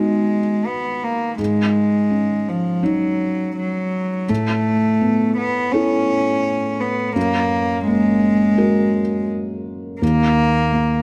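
Neoclassical piano and strings in 4/4 at 84 BPM, played with a rubato feel, this brief excerpt carries a longing, fragile mood across 11 seconds. A felt-muted upright piano provides the accompaniment throughout, its dark, mellow tone softened by thick felt and carrying audible action noise that makes it feel intimate and up front. Alongside it, a single bowed cello plays the second line sul tasto, its soft attack and pure, slightly nasal sound seeming to float close to the listener. The harmony moves from G#m7 through C#sus2/G#, Asus2 and F#add9 before settling on a bare D#5 at 10.0 seconds. Light reverb gives the pair a natural sense of space while keeping both instruments near.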